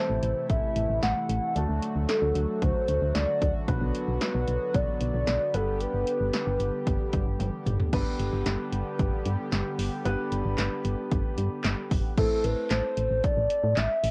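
A hollow, woody synth lead with a clarinet-like tone carries the melody in this nocturnal, melancholic synth-pop excerpt, its soft square-and-triangle voice touched with vibrato, a subtle noise layer, chorus and a cassette-tape haze. The lead falls silent at 7.4 seconds, where a punchy analog drum machine plays a fill, then returns at 12.2 seconds as the harmony comes back around to A minor. Beneath it, a brassy, detuned sawtooth pad sustains bold, bright chords with chorus and a filter swell until 12.1 seconds, while a warm grand piano plays intimate accompaniment, its action noise audible. A round, dark FM bass sits up front with a fast attack and decaying notes, alongside kick, snare, handclaps, hi-hat, toms and crash cymbal from the tape-warm drum machine, whose snare, claps and hats carry a short room sound. The whole piece has the close, modest feel of a home cassette recording made in a small booth.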